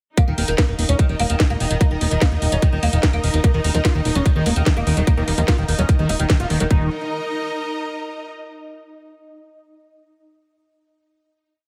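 A tight four-on-the-floor electronic kick sits up front at 147 BPM in straight 4/4, with metallic programmed hats and a cracking snare backbeat from a layered drum kit, while a fat, rolling sixteenth-note analog bass anchors this driving, hypnotic psychedelic trance piece. A bright, woody oud repeats a sixteenth-note riff melody over a pedal note through phaser, digital delay and sidechain pumping, alongside a swarming, tense drone and clear, bowed strings in slowly shifting chords; a squelchy, gritty acid bass line with accents enters at 3.5 s, and a very quiet, juicy blip pluck adds short answering phrases at 5.2 s. After a band accent at 6.3 s the strings hold a final chord, and the mix carries a heavily compressed, radio-like digital ambience.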